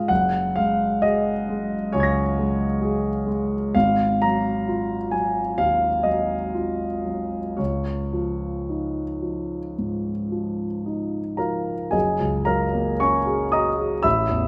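A wet recital-hall reverb with a 1.6-second decay surrounds an intimate grand piano that sits up front, its action noise audible and its notes ringing with long sustain. This hazy, dreamy impressionist solo piano excerpt moves in free rubato through open add9 and suspended chords, spanning from deep bass up into the high treble. At 11.9 s the music shifts into a new section on an F#add9 chord before being cut off at 14.5 s.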